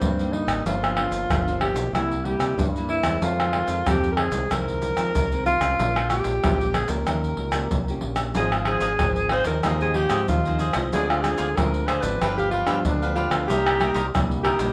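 Lively yet bittersweet, this short cut from a longer samba and choro piece moves at 93 BPM in C minor, with a straight 4/4 feel. An alto saxophone carries the melody up front in a jazz-styled solo, its warm tone shaded with vibrato and scooped notes while sounding distant and roomy. Beneath it, a fingerpicked nylon-string guitar with fresh strings sits in the background, and a growling fingered electric bass adds an overdriven, amped edge. The percussion of maracas, surdo, pandeiro and tamborim is placed up front, with a tight surdo and soft hands giving it a vintage, band-limited character. At 8.3 seconds a crisp, picked cavaquinho joins, brightening the texture as the chords move from Ab6 through Dm7b5 and G7 back to Cm7. The whole ensemble sits in a moderate large studio reverb.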